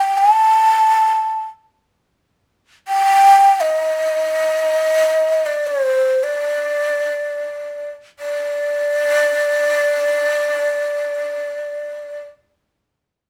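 Melancholic and soulful, this short cut from a longer Arabic maqam piece unfolds in free time in D maqam hijaz, carried entirely by a solo ney that sounds until 12.2 seconds within a range from C5 to A5. The end-blown reed cane is breathy and hollow, with a straight tone, soft attack and lifted highs, and it sits up front in the mix. The playing slows down from 3.6 to 8.2 seconds before a new section begins, all heard within a moderate studio reverb that captures a band playing live in one room.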